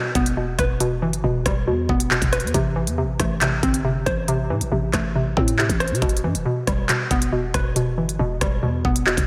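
Drenched in lush hall reverb for a dreamy haze, this dark, cold half-time drill excerpt puts a hollow, warbling, detuned square-wave pluck with chorus and a low-pass filter up front over Em and Am chords, joined at 0.2 seconds by a growling, buzzy 808-style bass and an electronic drill kit of knocking kick, crisp hi-hats, handclaps and rim clicks.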